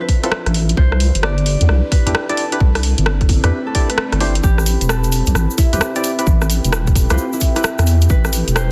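A dense, heavily limited mix with little room sound carries this bouncy, moody two-step UK garage excerpt at 131 BPM in A minor, where a tight, up-front electronic kick and a garage kit with bright hats and rim clicks swing beneath a deep, wobbling wobble bass, hollow organ stabs with lush chorus and digital delay, a ringing fingerpicked concert harp melody trailing dub echo, a very quiet breathy pad, and a dark, warbling vintage ambient pad in the background, while a faint electronic swell arrives at 3.7 seconds and a grainy tube shaker joins at 4.4 seconds as the chords move from Dm9 through Cmaj9 to Am9.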